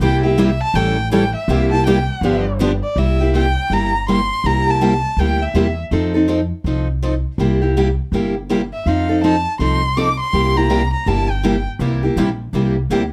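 This charming, swinging excerpt of acoustic string swing in the jazz manouche style opens with a bowed violin solo over a full string band. The violin carries the melody up front in its upper register, with vibrato, a soft attack, and expressive portamento slides. A bright picked steel-string guitar sits up front throughout, its finger squeaks audible, while a second, full-bodied jumbo guitar with fresh strings adds background support at the start and returns at 11.8 seconds. Underneath, a plucked upright bass with gut strings gives a woody, thumpy low end for the whole excerpt. The harmony moves through dominant seventh chords on C, A, G and F, and the violin rests at 5.8 seconds before coming back at 8.7 seconds, all in a moderate studio room with plate reverb on the violin.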